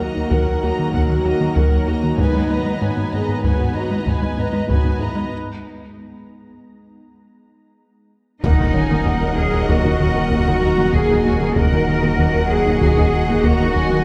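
A cinematic hybrid of orchestral and electronic film scoring, this vast, futuristic passage in Eb minor moves at 96 BPM in a straight 5/4, cut from a longer piece. Lush bowed strings form the core: a rich violin section carries a second line over smooth, even violas and a rich cello section holding the bass, while mellow French horns and a distant, roomy trombone section sustain chords very quietly beneath an ethereal, airy pad with ensemble chorus. A rubbery, nasal square bass plays a riff in the background, a soft round pluck adds dark, very quiet arpeggios, and a felt-muted upright piano lends boxy texture with audible action noise, all driven by a compressed, saturated taiko ensemble struck with hard sticks. The harmony moves from Eb minor to Ab minor add9 before a break at 5.3 seconds. At 8.4 seconds the music returns to Eb minor as a second violin section enters with an expressive, vibrato-laden melody, joined by a woody double bass section, a menacing detuned saw bass with a filter swell, and a faint electronic impact. 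The whole is set in a wet concert hall, heard from further back in the room.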